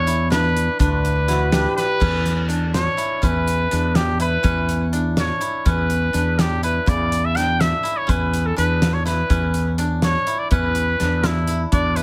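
A light reverb surrounds this driving, intricate progressive instrumental, which is cut from a longer piece and moves in 5/8 at 247 BPM in eighths in E dorian, shifting from G to E5 at 2.0 seconds. Up front, a clear, vintage-toned trumpet carries the pop-style melody with light vibrato. Beneath it, woody, fingerpicked koto arpeggios are touched by digital delay, and a round, direct fretless electric bass is bathed in lush chorus. A loose indie drum kit with a punchy kick, fat snare and dark cymbals pumps in a studio room, while a warm, classical-style trombone adds a brief second line from 1.3 to 2.0 seconds.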